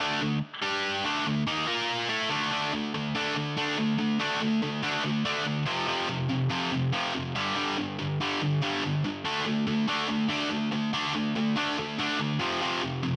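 In a straight 4/4 feel, this heavy, driving rock clip features a lone high-gain electric guitar, picked and double-tracked, that sits up front with a bright, distorted bite over a light reverb. It moves through quick shifts among D5, G5 and Bb5 power chords before settling at 2.5 seconds into a broader passage that passes through F5 and G5 and returns to D5. The clip is cut from a longer piece and closes on F5 at 12.4 seconds.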